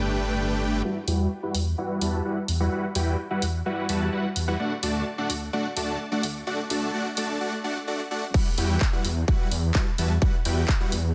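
Anthemic and emotional, this festival progressive house excerpt runs at 128 BPM in E minor, with a huge, thick supersaw riff and a lush, chorused detuned saw bass pumping under sidechain compression from the start, the riff carrying dub echo and a low-pass filter that sweeps through the build-up from 0.8 to 8.3 seconds. A big-room dance kit of crash cymbal, handclaps and hi-hat enters at 1.1 seconds with filtered hats, cymbals and snare, while the harmony moves from Gadd9 through Emadd9 to D. At 8.3 seconds the drop lands on Emadd9 as a punchy, up-front electronic kick joins, all within a lightly reverberant mix.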